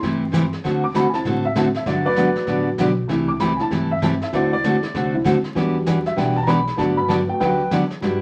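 Vinyl crackle and a roomy, reverberant ambience frame this playful, swinging country and western swing piece in G major at 195 BPM, where an upright piano with long sustain takes the solo throughout over a full-bodied picked dreadnought acoustic guitar, a thumpy, woody pizzicato upright bass and a vintage brush drum kit with a punchy kick and a rolled-off top, all moving through C6, D7, Gmaj7 and Em7 chords.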